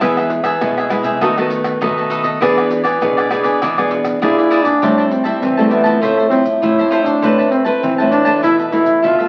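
Crackle from a very old 78 rpm record and a wet studio reverb frame this bittersweet yet lively samba-choro fragment in A minor at 100 BPM, cut from a longer piece. Crisp picked cavaquinho and a full-bodied classical nylon-string guitar with fresh strings and audible finger squeak, set up front, accompany throughout, while a small fingerpicked nylon-string guitar in the background carries the bass. Close, hard-handed maracas, pandeiro, tamborim and deep surdo drive the groove, and at 4.2 seconds a bright jazz-style trombone takes the solo melody up front, with light vibrato and scooped notes.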